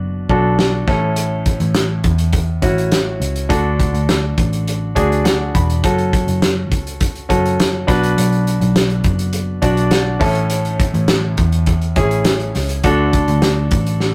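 Piano-driven pop in A major at 103 BPM in a straight 4/4, this short cut from a longer piece carries an uplifting, anthemic mood. A clear, polished baby grand piano sits up front as the accompaniment, ranging from A2 to B5 over a progression that moves through Bm, A, D and F#m. A vintage muted electric bass, picked and foam-muted, adds a dark, round, amped low end beneath it, while a natural country drum kit of hi-hat, kick and snare enters at 0.3 seconds with a punchy kick and a medium-tuned snare heard close in a small acoustic room. The piano breaks into brief fills at 4.7 and 9.6 seconds. The whole take has the rough character of a rehearsal-room recording, with tube saturation and a moderate studio reverb giving it a lived-in glow.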